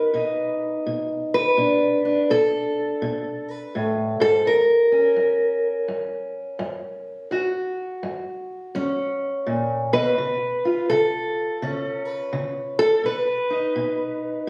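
Swung eighths set a loping 4/4 stride at 84 BPM in this short acoustic country blues piece, cut from a longer performance and lasting 14.5 seconds. A lone fingerpicked steel-string parlour guitar carries everything, its dark, boxy tone placed up front and ranging from F#2 up to B4. The mood is gritty and swaggering as the harmony moves from B through Bm7 to F#, arrives on C# at 10.2 seconds, and returns to B at 13.0 seconds. The sound was captured on a phone in the room, with compression and a moderate studio reverb adding a touch of space around the strings.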